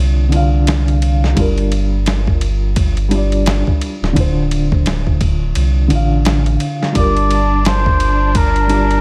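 This trip hop excerpt moves at 86 BPM in G minor with a 16th-note swing, setting a smoky, cinematic mood over Dm7 and Gm7 harmony. A felt-muted upright piano plays mellow, dark accompaniment from the start, colored by tremolo and tape echo, while a soft dub sub bass sits deep and round underneath, given a touch of tube saturation. At 0.3 seconds a dusty, sampler-style drum kit enters with a thumpy kick, a medium-tuned snare and ride cymbal, its gritty, compressed sound placed up front. At 7.0 seconds a trumpet with a cup mute takes the melody in a veiled, classical-style solo, joined by a lush symphonic string section holding bowed chords with vibrato. The mix is dry, with little reverb.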